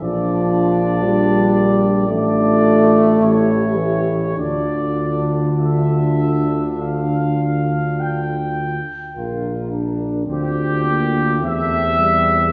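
In a rubato 4/4, this yearning, melancholic classical brass band hymn has an up-front, mellow, vintage trumpet section carrying the melody over a soft-attack French horn second line, a euphonium solo and a smooth-topped trombone section in accompaniment, and a roomy tuba holding the bass, all heard from further back on a wet scoring stage with a dulled high end as the harmony moves from Bb through Dm/A and A7 to Dm before shifting to Bb6 at 9.2 seconds and Em at 11.4 seconds in this 12.5-second excerpt.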